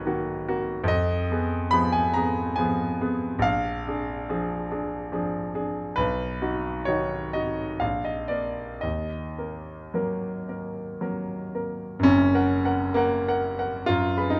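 A clear, smooth grand piano with a vintage tone and short sustain sits up front, playing alone in this brooding, passionate romantic character piece in E-flat minor, cut from a longer work, moving in a rubato 3/4 between 54 and 73 BPM through harmonies such as Bmaj7, Fm7b5 and Bb7, passing a chordless moment before settling on E-flat minor at 8.8 seconds and shifting to a new section on F# at 12.0 seconds, captured by close, detailed microphones in a recital hall with moderate reverb.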